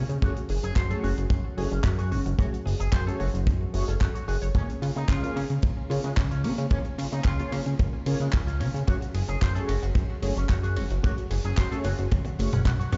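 A straight 4/4 nu-disco groove at 111 BPM sets a groovy, feel-good mood in this 13-second cut, driven by an up-front tight acoustic kick and a natural small-room funk kit with handclaps, hi-hat, ride, rim clicks and toms that closes on a drum fill at 12.1 seconds, beneath a fat, detuned sawtooth bass with sidechain pumping, a bright, twangy envelope-filtered electric guitar riff with subtle chorus and tape echo, lush, punchy unison pluck arpeggios, and round, dark synth brass accompaniment in the background, as the harmony moves from Gbmadd9 to Db6 and back, all heard as if played on a big sound system in a bare room with large studio reverb and a dulled top end.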